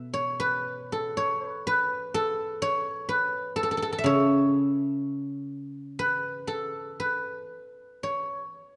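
A solo guzheng, plucked with fingerpicks, carries this brief, flowing fragment of Chinese traditional music, its silvery, ringing tone placed up front and spanning from low B2 to high E5. The rubato feel in 2/4 gives the serene passage a loose, unhurried drift across its 8.8 seconds. Light reverb and a dark production surround the acoustic strings, lending the cut from a longer piece a quiet, intimate glow.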